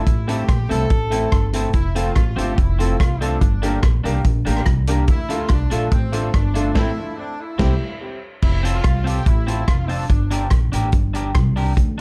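Joyful, cheerful ska clip with a dark production and light reverb, where a distant, roomy horn section carries the melody with light vibrato until 10.5 s, an up-front woody pizzicato upright bass and a punchy, dark-cymballed vintage drum kit drive the beat, a twangy, slightly broken-up electric guitar with warbly pitch drift and dub echo plays accompaniment throughout, a clear upright piano adds dub-echoed stabs until 7.7 s, and the band hits an accent from 6.8 s before the section repeats.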